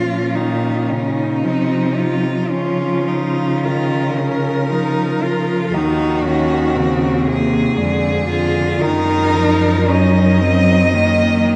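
A huge, wet reverb places this short excerpt in a vast, echoing space with a soft, dark top end. It is a serene, lyrical classical piece for four bowed cellos in Bb minor, in a slow, rubato 3/4 at about 51-60 BPM. A distant, expressive lead cello sings the melody with vibrato and portamento. A focused, close second line and an expressive accompanying cello, which also slides between notes, sit beneath it, while a rich, vibrato-laden bass cello anchors the harmony until 11.6 s.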